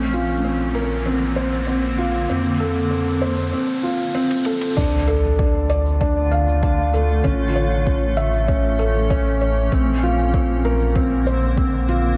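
Melancholic and hypnotic, this piano and strings electronica excerpt moves at 97 BPM in D minor, with a soft, felt-muted upright piano riff sitting up front, its action noise audible, over a blurred, evolving granular pad and a round analog bass that pumps with sidechain. Airy brushed jazz kit with dark cymbals and a shaker joins at 0.1 seconds, and a riser builds toward a drum fill before an impact marks the drop at 4.8 seconds. There a deep, overdriven electronic kick enters as the chords shift from D minor to A and back to Bbadd9, all in a small room with light reverb.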